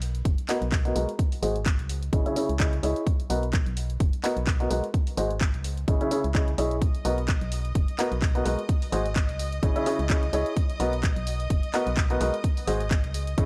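Piano house at 128 BPM in B major, this joyful, euphoric excerpt from a longer piece carries a light 16th-note swing over a chord cycle of Bmaj7, G#7 and C#madd9. A hollow, organ-like FM bass with a fast attack and dark decay pumps against the sidechain from the start, alongside a house kit of handclaps and warm hi-hats. A punchy, up-front electronic kick joins at 0.3 seconds. A brilliant baby grand piano riff arrives at 0.5 seconds, roughened by vintage 12-bit sampler grit, a low-pass filter and analog delay. At 6.8 seconds a smooth, bowed violin section adds high sustained chords with vibrato. The overall sound is dry and gritty, with a cassette-tape, hardware character.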